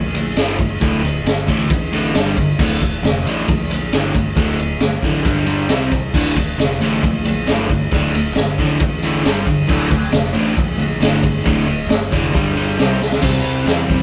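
Garage rock with a menacing, raw edge, this short cut from a longer piece is built on a crunchy, double-tracked overdriven guitar riff that sits up front and moves between D, G and C power chords. Underneath, a growling fingered bass with its own overdrive anchors the low end, while a gritty, saturated drum kit with a high-tuned snare, punchy kick and rolled-off top drives the straight beat with crash, ride and hi-hat. The band sounds like it's playing live together in one room with light reverb, and a drum fill at 13.0 seconds closes the passage.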